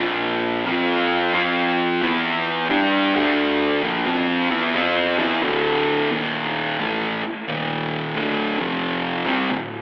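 A double-tracked, up-front fuzz guitar plays alone throughout this ominous, brooding metal excerpt at 88 BPM in D minor with a swung eighth-note feel, its distorted, picked power chords from Bb5 through D5, Eb5 and A5 thickened by slapback and tape echo and heard as if through a club's PA, with light room reverb and a thin, telephone-like tone.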